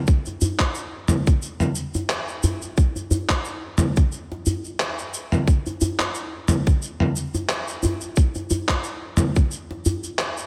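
A lightly swung sixteenth-note groove in 4/4 drives this earthy, meditative downtempo excerpt, built entirely from percussion. A tight, tape-warm electronic kick sits up front beside a gritty, compressed sampler-style soul kit with handclaps, shaker and toms, while a close, medium-tuned djembe with metal rattles joins at 0.3 s. The kick drops out at 9.5 s and the djembe at 10.0 s, leaving the kit in a moderate concert hall reverb until 10.5 s.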